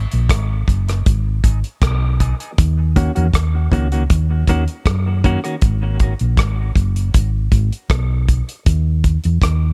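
A round, punchy hollow-body bass sits up front in this deep, spacious dub reggae fragment, joined by a dry, tight-kicked 70s drum kit of hi-hat, kick and rim click, while a dark, compressed clean guitar filtered and drenched in tape echo plays only until 5.6 seconds in a small, echo-heavy room.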